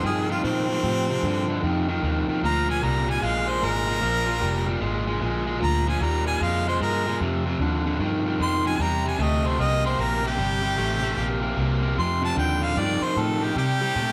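An electric blues shuffle at 151 BPM in 4/4 with a swung eighth-note feel, this gritty, laid-back excerpt is taken from a longer piece and moves through F9, Bb7, Fsus2 and C9 before returning to F9 and landing on C5. A clear, up-front harmonica carries a jazz-style solo across the whole 14.1 seconds, marked by light vibrato and scooped notes, while a cranked, bright stack guitar with overdrive picks a riff and a vintage foam-muted fingered bass supplies a dark, round low end. The band plays live in one large studio room with moderate reverb.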